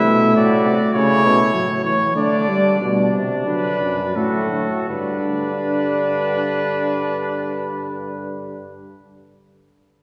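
Classical brass canzona in G major, elegant and stately at 80-105 BPM. A clear, up-front trumpet carries the imitative melody over a more distant flugelhorn second line with light vibrato, a mellow euphonium accompaniment and a bright, vibrato-tinged bass trombone that also sounds further off. The short passage moves from Am through A and G/D to D before settling on G at 4.9 seconds, easing in tempo until then, all within a wet concert hall reverb heard from further back in the room.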